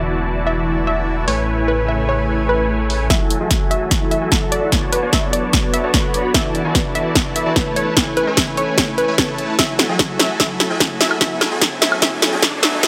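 Future bass in F# minor at 148 BPM with a half-time feel, this bittersweet, lush cut is tuned slightly flat to A4 = 437 Hz and moves through E7sus4, Amaj7, F#m9 and Bm7. A huge, bright supersaw riff carries the chords while a detuned, wave-folded unison pluck sings the melody with tape echo, both pumping to the sidechain, and an airy, breathy pad sits softly in the background with chorus. A thick, detuned saw bass sits up front only until 3.1 seconds, when a punchy electronic kick and a ringing, fingerpicked concert harp playing filtered arpeggios with delay take over the low and middle layers. A layered big-room drum kit with a punchy snare, filtered hi-hats and woodblock joins shortly after the opening, and from 3.1 seconds the section turns into a build-up with filter sweeps across the supersaw, harp and pad. A background riser enters at 10.7 seconds, all within a moderate digital room reverb.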